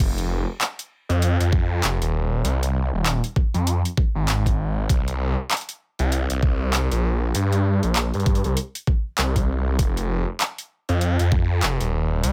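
Glitch hop with a playful, funky, swung feel, where a thick, swirling detuned saw bass with phaser and overdrive sits up front beside an overdriven dubstep kit of bright hi-hats, handclaps and crash cymbal, joined at 1.5 s by a knocking electronic kick until 11.5 s, all in a dry sound in this short clip from a longer piece.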